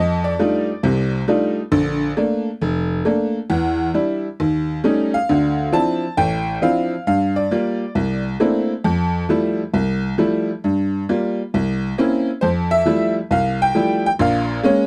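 A solo tack piano opens this relaxed, swinging jazz passage cut from a longer piece, its metallic, jangly tone sitting up front and spanning from deep bass notes to a bright upper register. The harmony moves through rich extended chords, from F13 and Bbmaj7 through altered dominants like Eb7#11 and C7b9, before a new section arrives at 12.4 seconds and turns toward Bbm7. Close, detailed miking and a light reverb bring out the instrument's vintage, boxy character.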